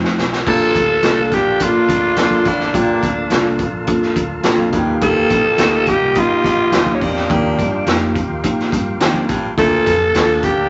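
A short drum fill on a raw garage kit opens this uptempo 1960s-style soul excerpt at 105 BPM, with a barky, slightly out-of-tune tine electric piano and a dark, foam-muted fingered bass already sounding underneath. At 0.5 seconds the band fills out. A growling, raspy tenor saxophone takes the melody up front with breathy vibrato and scooped notes, while a tight, clear horn section plays a second line in the background. An edgy, forceful baritone saxophone punches out a low riff, and an overdriven tonewheel organ holds thick sustained chords through a rotary speaker, very quiet with audible key click. Soft-handed congas add close, dry percussion far down in the mix, and the drums sit up front with a boomy kick, gritty saturation and a rolled-off top. In Bb major, the harmony moves from Bbmaj7 to Ebmaj7 at 4.7 seconds and back at 9.6 seconds, all in a moderate club reverb that gives the uplifting, joyful groove a lively room feel.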